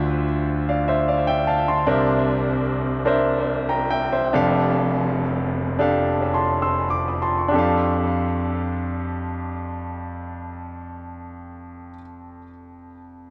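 A clear grand piano opens alone on a Dm9 chord, setting an uplifting, hopeful gospel mood in a slow, straight 6/8 at roughly 31 to 51 beats per minute, felt in dotted quarters. The playing stays in F major and moves from Dm9 to C9 at 1.9 s, then settles onto F69 at 4.3 s, with the tempo slowing between 1.9 and 7.5 s. A second passage begins at 7.5 s, and the piano carries everything on its own across a span reaching from F1 up to E6 until it ends at 13.3 s. Its tone is natural and up front, touched with tape echo, while a moderate plate reverb gives the room a lingering 2.6-second tail. The mix leans heavily on echo and has a soft, rounded top end, and the recording is cut from a longer piece.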